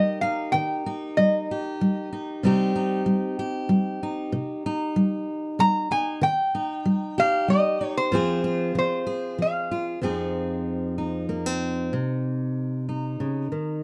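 A metallic, nasal lap resonator guitar carries the melody with slide and fingerpicks, sitting up front in two short phrases, the second arriving at 5.6 seconds. Beneath it, a fingerpicked steel-string acoustic guitar with an auditorium body plays accompaniment through the whole 13.8-second excerpt, shifting from an Eb–Cm–Fm progression to Fm7 and Cm near the close. This intimate, reflective acoustic folk piece moves at 95 BPM in 3/4 in F minor, tuned to A4 = 435 Hz, captured with close, detailed microphones and light reverb.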